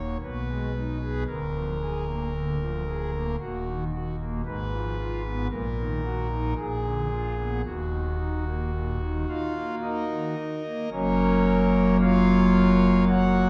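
Grave and dark, this brief classical passage is cut from a longer chorale-style piece in triple time with a straight feel. A solo pipe organ plays throughout on its foundation stops, with a thick, romantic voicing that reaches from the deep pedal register up to the treble. The organ sits up front, its full-bodied sound carried by a long church reverb that lets each chord hang in the space. The harmony turns through diminished and dominant seventh chords before settling on the minor home chord, then moves to a new section at 10.9 s on an F# chord. The production is dark and warm, suiting the solemn character of the music.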